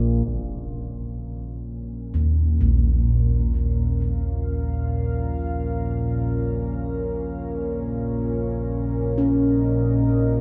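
Dark ambient drone, unsettling and ominous, cut from a longer piece and set in a vast, echoing cathedral-like space with a long, wet reverb tail. A vintage analog drone sits low and up front, its sawtooth and pulse-wave tones warbling and evolving through pulse-width modulation and chorus as it fades in. At 0.3 seconds a dark analog pad joins, fading in with deep, moody sustained chords built from detuned sawtooth and triangle waves with a sub octave, softened by chorus and a shimmer reverb. A huge, bright impact lands very quietly at the same moment. From 2.1 seconds, gamelan-type bossed gongs play arpeggios up front, their metallic, round bronze tones beating, with a boxy small-room character and a diffuse ambient delay trailing behind them.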